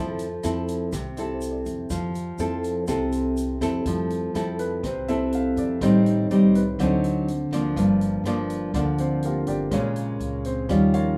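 A straight 4/4 bossa nova pulse at 123 BPM carries this relaxed, sophisticated fragment in F major, with a drum kit of hi-hat, rim click and a punchy kick underneath, and a grainy, bright tube shaker sitting in the background until 3.9 seconds. Up front, a fingerpicked classical nylon-string guitar holds the accompaniment from the start, while a woody, thumpy pizzicato upright bass sits low beneath it. A warm grand piano joins at 1.2 seconds and takes a natural-sounding solo from 3.9 seconds, as the harmony moves from Fmaj7 through Am7b5, D7b9 and Gm7 to Bbm7. The whole has the feel of a rough home demo mix, set in a small room with a short ambience of 0.5 seconds.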